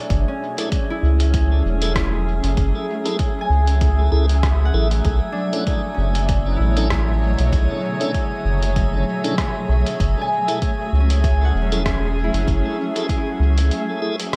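A relaxed 97 BPM groove in 4/4 with a light 16th-note swing drives this meditative, spacious ambient dub excerpt, built on a deep, layered electronic kick and a muffled, tape-warm sampler-style kit of hi-hat and rim click treated with dub echo, under a round, up-front sub bass that drops out at 13.7 s for a brief break. A cloudy, evolving granular pad sustains chords moving from F#m9 to Bm11 and back, while a ringing concert harp plays arpeggios through dub echo and a glassy texture of drifting overtones floats in chorus and reverb. A piping tonewheel organ adds echoing stabs through a slow rotary speaker from 0.6 s, sitting in the background of a light digital ambience.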